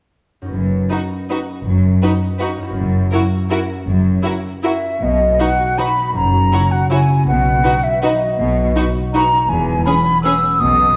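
Classical and sweeping, this excerpt moves in an elegant 3/4 at 161 BPM with uneven, rubato beats, set in B major. A bright, ringing concert harp spreads arpeggios from 0.4 seconds, while rich, bowed cello and double bass sections carry the bass line beneath it. A distant violin section sings the melody in the background, joined by a focused second violin line and a smooth, close viola accompaniment, all with vibrato. At 4.6 seconds a mellow, airy silver flute enters up front with an expressive second line. The harmony turns between B and F#7 before settling on E6, and a scoring-stage reverb lends the ensemble a lush, spacious sound.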